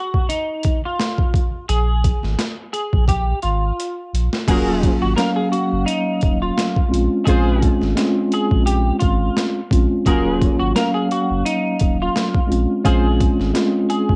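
A dark, moody boom-bap hip-hop cut with a swung 16th-note feel, opening on a clean, hollow-bodied semi-hollow electric guitar melody and a gritty, pitched-down sampler-style drum kit whose thumpy kick, high-tuned snare and overdrive sit up front, with a drum fill from 3.1 seconds. A round sine sub bass enters at 1.7 seconds, and at 4.5 seconds a mellow tine electric piano joins over Ebm9 and Bbm9 chords alongside tight jazz-style horn stabs with light vibrato, plate reverb and analog delay. The home cassette recording keeps the top end dull, with light room reverb.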